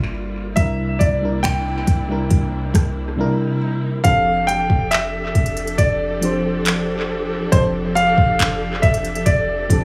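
Contemporary R&B with a late-night, sensual mood, in this short clip a clear, intimate grand piano carries the melody in the upper register through analog delay, over a mellow FM electric piano with a noise layer, lush bowed strings whose sustained chords pump under sidechain, and a deep, boomy 808-style bass. A smooth, up-front electronic kit of soft kick, hi-hat, rim click, finger snaps and handclaps, also sent through analog delay, enters at 0.6 seconds and drops out between 3.2 and 4.0 seconds as the harmony moves from Gm11 and C9 to F69. The echo-heavy mix sits in a small room with light digital reverb.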